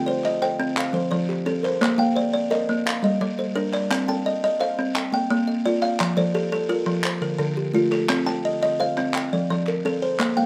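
Southern African traditional music in a rippling, hypnotic mbira-style interlocking cycle at 115 BPM in 12/8 and Bb major, where an up-front buzzing kalimba plays bright, woody, thumbnail-plucked arpeggios from a solid board over a softer, mellow hollow-box kalimba's fingertip arpeggios, while a human, acoustic group handclap from 0.2 seconds adds live-room percussion, captured in light reverb through close, detailed microphones as the chords move from Cm and F into a longer passage opening on Bb at 1.8 seconds.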